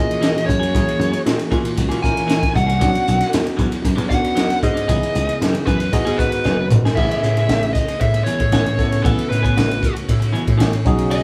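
A straight 4/4 groove at 116 BPM drives this bright, funky electric jazz fusion excerpt, built on a punchy, foam-muted thumbed slap bass and a gritty, saturated fusion drum kit with a high-tuned snare and a pumping small-room character. A barky tine electric piano through a combo amp sits beneath, joined by soft, very quiet sul tasto bowed string chords. Meanwhile an up-front, dark, overdriven lead guitar carries a picked solo over F#9, Bmadd9, C#m9 and rootless Emaj7 harmony until a drum fill from 6.4 to 7.0 s lands on Amaj9, with a clean, compressed electric guitar adding stabs in the background and the band playing live together in one room with a moderate large studio reverb.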